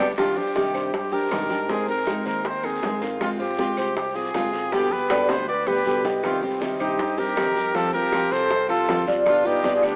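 A rough home-demo mix with a small-speaker sound sits in a lush, wet hall reverb, framing this nostalgic, sultry Cuban son and guajira excerpt in C minor at 158 BPM. Up front, a clear trumpet with vibrato and a smooth top carries the melody over a bright, full-bodied fingerpicked nylon-string guitar, while a metallic, double-strung tres picks arpeggios and a punchy fingered electric bass stays in the background. Very quiet, tight, high-tuned bongos and woody claves join a raspy guiro in the percussion, with a drum fill from 5.1 to 6.2 s, and an airy, straight-toned concert flute enters at 5.5 s as a second line.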